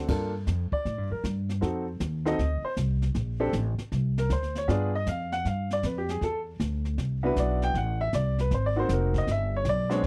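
Dry and close, this 1970s-style studio recording sits in a small room, giving a short cut from a longer jazz piano trio piece an intimate, smoky feel. The baby grand piano carries the melody up front with a natural, warm tone, taking a solo across the whole passage from 0.1 seconds onward. Beneath it, the upright bass is plucked with a woody, steel-strung voice and sits just as close to the listener. The brush drum kit stays lower in the mix, offering an airy, polished kit with dark cymbals, a medium-tuned snare and a boomy kick, played with brushes. The swinging harmony moves through minor sevenths, altered dominants and lush major ninth chords before settling on G near the end.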